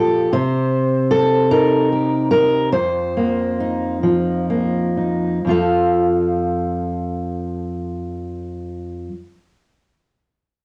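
In a free, rubato 6/8 that slows from 0.3 to 5.4 seconds, this short folk fragment cut from a longer piece features a solo fingerpicked steel-string acoustic guitar, up front with an auditorium-sized body and the soft grain of cassette tape, moving through Cm7 and F7sus4 before settling on F at 5.4 seconds in a pastoral, gently reverberant home recording.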